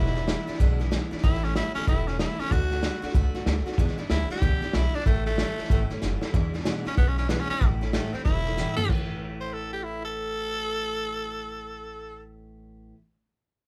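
Rowdy and rollicking, this swung rockabilly cut at 188 BPM in A major puts a raspy, gritty tenor saxophone up front on the melody with bright vibrato, over a bright, full-bodied jumbo steel-string acoustic guitar whose finger squeak peeks through, a woody, thumpy pizzicato upright bass, and a muffled, lo-fi vintage drum kit with dark cymbals and a punchy kick that drops out at 9.0 s after fills at 6.0 and 8.6 s, all caught live together in a small room.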